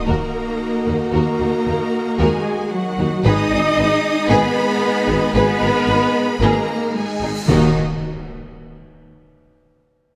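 Cinematic, epic orchestral film score in Eb minor at 113 BPM in a straight 4/4, this excerpt from a longer piece feels relentless as it moves from Ebm to Abm and back to Ebm at 7.5 seconds. A focused, vibrato-laden violin section carries the melody high up, while a second violin section with a smooth top plays a background line and a distant, expressive viola section adds accompaniment. Close, even cellos hold the bass alongside bowed double basses and a mellow tuba, and a lush string section and a softly vibrato-tinged French horn section sustain chords behind them. Huge, dark sound effects frame the passage, with an impact at the start, a cymbal swell from 6.6 seconds and another impact arriving with round, dry timpani on Eb3 at 7.5 seconds. The ensemble sits in a moderate concert hall reverb that gives the bowed sections a spacious, grand sheen.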